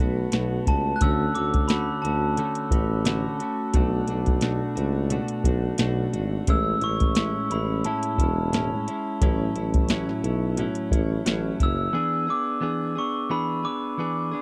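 Indie bedroom pop at a dreamy, sunny 88 BPM in A major, with a light 16th-note swing. A direct, clean, compressed electric guitar is picked through lush chorus and vibrato, while a warm tuba with its own vibrato carries the bass and an analog rhythm box with deep kick, crisp snare and metallic hats sits up front in a dry, close 1970s-style sound. Above, a bell-like glockenspiel struck with hard plastic mallets rings through chorus and slapback echo over chords moving from Dmaj7 to Amaj7 and A6, before tuba and drums drop out near 11.9 seconds and guitar and glockenspiel alone hold an E7 to the cut.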